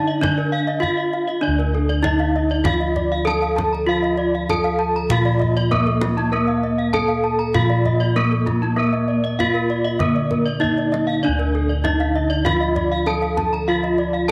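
Brilliant and shimmering, this Balinese gamelan passage moves at 98 BPM in a straight 4/4, centred on D pelog, and is cut from a longer piece. A bright bronze metallophone struck with a horn mallet carries the melody up front, its paired tuning producing ringing, shimmering beats. Beneath it, a mellow, airy metallophone with padded disc mallets keeps a soft accompaniment in the background, while dark, smooth bossed gongs supply a round, beating bass. Two more metallophones spin arpeggios above: one played with a wooden mallet, the other a vintage, band-limited horn-mallet voice treated with tape echo. A deep kendang struck with hard hands adds percussion in a small-room sound, and a breathy, bright bamboo xiao appears very quietly as a second line only in the first 0.5 seconds. A moderate plate reverb gives the bronze a lingering ring.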